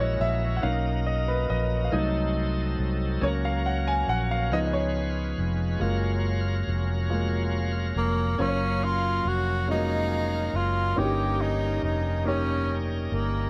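A breathy, intimate tenor saxophone enters up front at 8.0 s, carrying a whispered, jazz-style melody with scooped notes, a soft attack and vibrato, overlapping the close of a clear, natural concert grand piano solo that spans the first 8.4 s of this soulful, hopeful slow gospel passage in F# major at 46 BPM in 6/8. Beneath them, a bright tonewheel organ holds full, shouting sustained chords with key click and a slow rotary speaker, while a round, amped fingered electric bass sits prominently in the low end. Through light reverb, the harmony moves from F#7/A# through Bmaj7, Cdim7 and C#7 to F#maj7, then turns to D#7 near the end of this cut from a longer piece.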